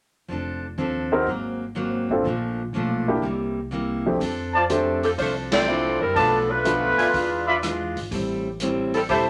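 Wet studio reverb surrounds this joyful, brassy big band swing excerpt in F major at 123 BPM. It opens with a picked, full-bodied jumbo steel-string acoustic guitar with finger squeak over a woody, thumpy pizzicato upright bass on gut strings, joined soon by an intimate, vintage upright piano up front with audible action noise and long sustain. The swinging drum kit arrives at 4.2 s with boomy kick, medium-tuned snare, ride, hi-hat and rim click, a mellow, soft-attack trumpet section adds stabs, and a tight, smooth-topped saxophone section with light vibrato carries the melody from 5.0 s, with a band accent at 5.4 s before the chords move through Bm7b5, E7b9 and Am7.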